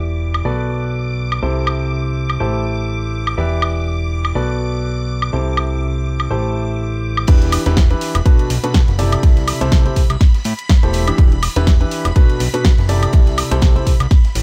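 Piano house with an energetic, soulful mood, cut from a longer piece and moving with a swung 16th-note feel over a cycling progression of Bm7, C6, Am7 and Em7. A clear concert grand piano carries the riff from the start, its deep low end shaded by a low-pass filter, delay and sidechain pumping, while a fat analog bass, thick with detuned sawtooth and square-wave tones and a fast-attack filter pluck, sits up front and pumps along with it. High above, a vintage string machine of violins holds shimmering, warbling chords with a slow attack and long release, coloured by ensemble chorus and the same pumping motion. A house drum kit enters at 0.3 seconds with a punchy snare, bright hats, crash cymbal and woodblock. At 7.3 seconds the drop arrives, bringing in a punchy, up-front electronic kick along with a very quiet acoustic jazz kit whose dark ride cymbal and high-tuned snare carry a studio room sound, all set within a small room ambience.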